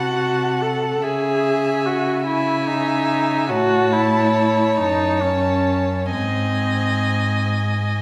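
Elegiac and yearning, this slow, rubato classical movement for string quartet in 6/8 is an excerpt from a longer piece, with all four players bowing con sordino. A muted violin sings the veiled melody high above while a second muted violin, close and soft-attacked, carries a dark inner line, and the viola's smooth accompaniment sits up front until it falls silent at 7.4 s. Beneath them, the muted cello's light vibrato and gentle portamento anchor the bass, all set within the lush, lingering reverb of a scoring stage.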